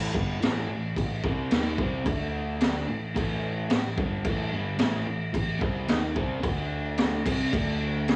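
Garage rock with a raw, swaggering mood at 110 BPM in straight 4/4, this short cut-out fragment pairs a crunchy, double-tracked overdriven guitar riff carrying cassette-tape grit with a dark, round picked electric bass and an up-front raw drum kit, its high-tuned snare, boomy kick and crash cymbal saturated and rolled off on top, all in a small-room home cassette recording moving through A5, D5 and C5 power chords.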